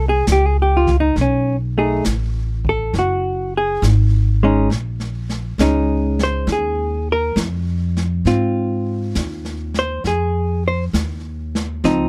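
Melancholic and intimate, this short cut from a longer jazz ballad moves at a slow 68 BPM in 4/4 with a gentle swing, drifting through Fm7, B13, Bbm7 and Ab6. A dark, clean hollow-body electric guitar, fingered and compressed, sits up front as accompaniment beside a woody, growly pizzicato upright bass. A brushed drum kit enters at 0.3 s with a smooth, rolled-off top and a boomy kick, all captured by close, detailed microphones in a dry sound with little reverb.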